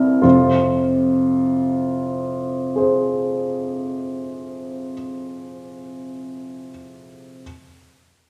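An upright piano opens this brief fragment of a romantic character piece for solo piano, its woody, intimate tone sitting up front with the clatter of its action clearly audible. The mood is bittersweet yet stormy, moving at an unhurried pace in a six-eight metre that bends freely with rubato. Harmony settles on an F minor chord from 0.2 seconds, and the instrument's vintage character and long sustain let each sonority linger. The playing spans from the low C2 region up to C5, giving the texture depth, its tone smooth throughout. A wet recital hall reverb surrounds the piano, and the passage breaks off at 7.4 seconds as part of a longer work.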